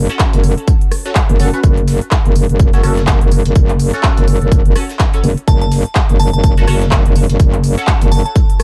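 A metallic, wobbling FM bass sits up front, saturated and compressed with chorus and sidechain pumping, driving this aggressive, bouncy bass house excerpt from 0.0 to 8.2 seconds over a single minor chord. A punchy, overdriven electronic kick anchors the groove alongside a layered big-room dance kit of handclaps, crisp hi-hats and rim clicks that also carries overdrive. Further back, a gritty sampler-style breakbeat kit adds a high-tuned snare, hi-hat and tambourine, high-passed and pumping, with a swung sixteenth-note feel. A nasal, band-passed sawtooth chord stab with a moving notch flickers through phaser, ensemble chorus and digital delay. At 5.5 seconds a glassy, crystalline FM bell enters with a long release, chorus and delay, adding a bright sparkle to the dark production.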